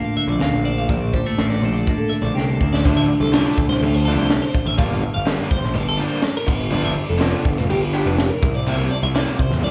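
Restless and wistful, this math rock and midwest emo passage moves at 124 BPM in D minor, cut from a longer piece and heard as a live gig through a club PA with light reverb. Two twangy, compressed twelve-string electric guitars open together, one picking accompaniment through spring reverb until 4.8 s while the other rings out tremolo-laced arpeggios, over a crisp fusion kit with a high-tuned snare and punchy kick and a round, fuzzed bass sitting up front. After a drum fill, a dark, double-tracked overdriven guitar riff with slapback echo enters at 2.9 s as the chords drift from Dm7 through Gm11 and G9 to C9.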